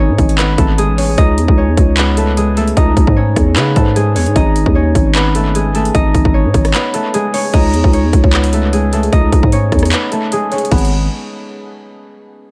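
A mellow, ringing concert harp opens this dark, menacing trap excerpt. Its fingerpicked melody is low-pass filtered, soaked in dub echo and placed up front over a growling, buzzy 808-style bass with a fast attack and a decaying sound. From 0.2 seconds an overdriven, electronic drum kit enters in a half-time feel: hard-clipped kick, metallic hi-hats, handclaps, rim clicks and crash cymbal, all carrying vintage 12-bit sampler grit and dub echo. Brief breaks at 6.7 and 9.9 seconds punctuate the echo-heavy digital ambience, and a filter sweep colours the harp from 7.5 seconds.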